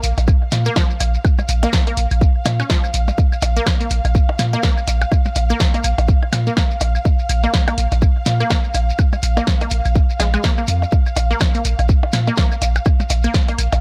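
Clinical and sparse, this minimal techno piece sets a layered, up-front kick and a deep sine sub bass that pumps with sidechain beneath an analog drum machine's hi-hat and snare, a grainy shekere in the background, tape-warm claves and blips with digital delay, a squelchy, detuned sawtooth pluck carrying chorus and delay, and a dark bowed string section with vibrato that sits high on F5 and also pumps.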